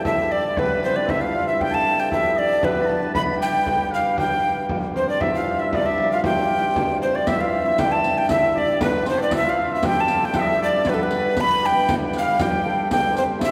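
A breathy, chiffy alto recorder carries the festive, ancient melody of this medieval dance up front, over a distant, vibrato-laced shawm, a shimmering hammered dulcimer and a reedy harmonium drone, joined almost at once by a deep frame drum, while a riq's bright jingles enter at 7.3 seconds, all bathed in the long, wet reverb of a church in a passage cut from a longer piece.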